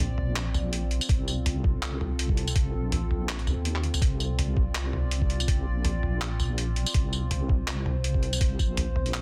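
Dark and spacious, this half-time drum and bass fragment pairs a deep, wobbling sawtooth-and-sine bass up front with a moody, detuned analog pad of sustained chords pumping under its sidechain, phaser and chorus, while a gritty, pitched-down boom bap sampler kit of handclaps, hi-hat, tambourine and toms swings through light studio reverb and a thumpy, tape-warm electronic kick joins from 1.1 to 8.7 seconds in a dense, heavily limited mix.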